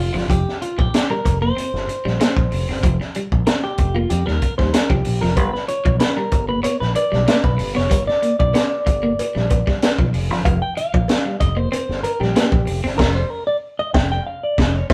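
A crunchy breakbeat drum kit sets a straight 4/4 funk groove at 94 BPM, its punchy kick, high-tuned snare, hi-hat, crash and dark cymbals sitting up front with a gritty, saturated edge and a rolled-off top. Underneath, a fingered electric bass plays direct and amped with a bright tone, while a clean, compressed electric guitar takes the solo throughout this playful, energetic excerpt, its warm fingered lines up front in the upper register. A second electric guitar at the edge of break-up plays a picked, compressed riff in a lower range with tremolo. A metallic cowbell sits in the background from 5.4 to 12.5 seconds, as the harmony moves from Fsus4 to G7 and then to Fsus24 around 10.5 seconds. The band hits an accent together from 13.0 seconds to the cut at 14.9, all heard live in one room with moderate studio reverb.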